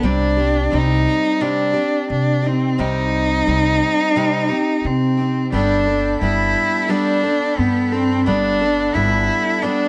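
Peaceful and hopeful, this acoustic folk passage at 88 BPM in 4/4 is carried by a bowed cello played by a single player up front, its rich, focused tone and vibrato set in plate reverb. A full-bodied picked steel-string acoustic guitar and a woody, dark pizzicato upright bass support it over a C minor chord, which moves to Gadd9 at 5.5 seconds. At that point a reedy, breathing harmonium enters in the background with sustained chords, all within a moderate studio room.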